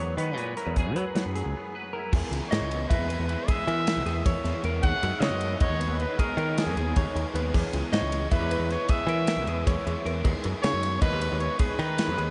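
Set in a straight 7/8 that keeps the phrases tipping forward, this wistful, intricate slice of math rock and midwest emo comes from a longer piece. A twangy, compressed electric guitar with ensemble chorus opens the track over a suspended F#9sus4 chord. Beside it, a dark, fingered clean guitar spins arpeggios throughout, a growly picked bass sits up front, and an acoustic studio kit with punchy kick and bright cymbals joins almost at once. After a short break, the twangy guitar gives way at 2.1 seconds to a double-tracked, overdriven semi-hollow guitar riff tucked in the background, also with ensemble chorus. At 2.5 seconds a clear, vintage-toned solo trumpet with vibrato and delay carries the melody as the harmony cycles between E6 and G#m9. The whole mix is dreamy and soaked in a huge ambient reverb, with the top end rolled off to a soft haze.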